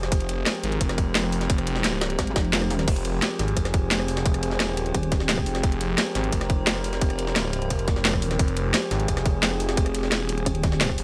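This dark technical drum and bass cut has an aggressive, futuristic edge and light reverb, with the main drums and basses pushed up front. An overdriven electronic kick lands tight and layered alongside a produced kit of cracking snare, bright hi-hats, rim clicks and crashes, itself overdriven, while a gritty, pitched-up jungle sampler-style kit sits in the background with a high-tuned snare and ride cymbal, filtered and tape-tinged. Low down, a phased, detuned saw bass holds a thick, swirling, saturated sustain, and a heavy pulsing pluck wobble bass with chorus surfaces in short bursts, first at 2.2 seconds. Behind them, a metallic, inharmonic FM drone warbles with an eerie, nasal, vintage colour, sustaining a minor add-nine chord through slow attacks and long releases, pumped along with the saw bass by the sidechain. The kick briefly drops out between 2.5 and 2.9 seconds.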